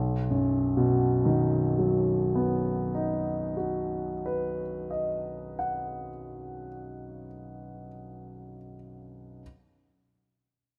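Dreamy and hazy, this short excerpt of impressionist classical solo piano drifts in B major at a slow 38-44 BPM, counted in 5/4 with a free, rubato feel. A grand piano carries everything alone from 0.0 to 9.4 seconds, its tone warm, open and generous, with long sustain that lets each sonority linger. Its range stretches from a deep B1 up to F#5, giving the sound both a grounded low end and a gentle upper glow. The instrument sits up front, close to the listener, while a moderate scoring-stage reverb with a 1.6-second decay surrounds it with a soft halo of space. The passage opens on a B chord at the start of a section that lasts until 7.3 seconds, and the fragment is cut from a longer piece.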